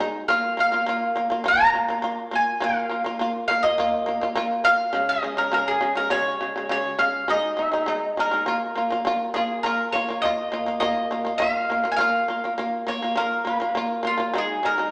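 A large studio's wet reverb, with a 1.3-second tail, surrounds this short fragment of Mongolian folk music in a vast, solemn space. At 102 BPM in a straight 4/4, it sits in a Bb yu mode. A bright, buzzing shamisen opens at 0.0 seconds with plectrum-plucked arpeggios in its low-to-middle register, its fretless tone percussive and powerful up front. At 0.3 seconds a mandolin enters with the melody, its double strings giving a round, acoustic voice that rings high, touching Bb5 at the outset and later reaching Db5 and Ab5. The piece moves into a new section at 9.6 seconds, with the mandolin's line settling on Ab5 near the close of the cut.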